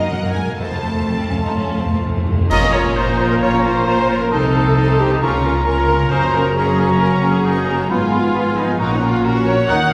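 This fragment of a longer work sits in wet scoring-stage reverb, heard from further back in the room, and carries the urgent, dramatic sweep of a fast romantic movement for symphony orchestra. Strings carry it throughout. A lush violin section sings the high melody in the background with soft attack and vibrato, a second violin line adds rich, focused tone, and the viola section sits up front with a smooth top, while cellos and double basses hold the bass with close, rich bowing. A concert harp rings out arpeggios beneath, and timpani played with soft mallets give a round fill from 0.6 s. At 2.5 s the band strikes an accent with bright clash cymbals and bass drum as winds and brass join: an airy flute, a very quiet clarinet and a mellow cor anglais add second lines, punchy French horns hold sustained chords, and a trumpet section adds stabs from the background. The harmony moves through minor, major and diminished chords, keeping the passage restless.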